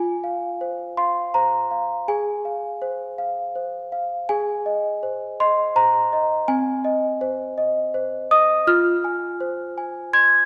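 Dreamy and innocent, this short classical lullaby excerpt features a solo celesta, bell-like and delicate with a sweet, bright, mid-forward tone from its hard felt hammers, heard up front in 3/4 at 82 BPM, ranging from C4 to Ab6 over a progression from F minor to A-flat and back to F minor, bathed in moderate concert hall reverb.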